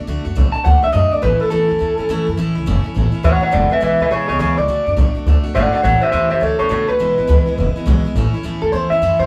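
A picked steel-string dreadnought acoustic guitar with fresh strings and an upright bass, woody and thumpy up front, start this upbeat, rollicking rockabilly piece together at a swung 208 BPM in A major. At 0.5 seconds a twangy, slightly broken-up electric guitar through a small old amp takes the melody up front, riding a D, A and E progression, then breaks into a clean solo at 8.2 seconds. The band plays live in one room with a moderate large studio reverb, and the clip is cut from a longer piece.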